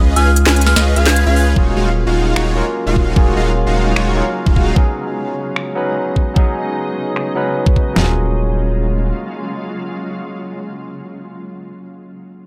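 Heard through a light reverb, this lush, bittersweet future bass excerpt sits at 150 BPM in a half-time 4/4 feel in Eb minor. It opens on a drop over a Db9 chord: huge, detuned, sidechain-pumped supersaw chords carry a riff with analog chorus, cassette tape colour and digital delay above a thick, saturated sine sub bass, while a very quiet fingerpicked Celtic harp and a punchy unison pluck play arpeggios and a glassy FM bell sings a short melody with dub echo in the background. A trap kit of finger snaps, filtered hi-hats and a sharp snare comes in almost at once, and at 1.6 s an overdriven dubstep kit with a knocking kick, deep snare and toms moves up front as the harmony shifts to Ebm11 and later B69. A barky, clean tine electric piano carries the accompaniment up front from 1.5 s with digital delay, while a shimmering, ethereal pad with granular octave-up shimmer and built-in reverb holds sustained chords alongside it. 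At 8.0 s the music returns to Ebm11 as the sub bass briefly reappears, leaving the electric piano and pad to carry the closing stretch.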